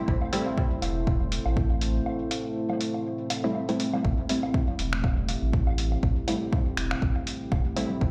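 A dark, warbling pad holds a single minor seventh chord from the start of this hazy, nocturnal dub techno excerpt, breathing with sidechain pumping alongside a smooth sine sub bass and an overdriven, up-front electronic kick. Muffled, pitched-down sampler drums add finger snaps and hi-hat, while woodblock and congas drift through dub echo in a small room. A muted, sawtooth chord stab flickers briefly at 0.3 seconds, then returns at 3.4 seconds with chorus, phaser and echo, all set in the reverberant ambience of a big sound system playing in a bare room.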